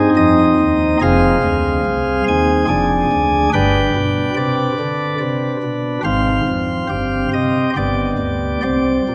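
In a slow, steady triple metre with a straight feel, this solemn, dark classical chorale is carried by a solo chamber organ. Its flute stops sound light and sparkling, with a bright chiff, sitting up front across a span from deep bass to high treble. A wet church reverb with a 2.7-second decay surrounds the brief passage, cut from a longer piece, as its sombre minor harmonies settle onto a bare C5 chord at 8.6 seconds.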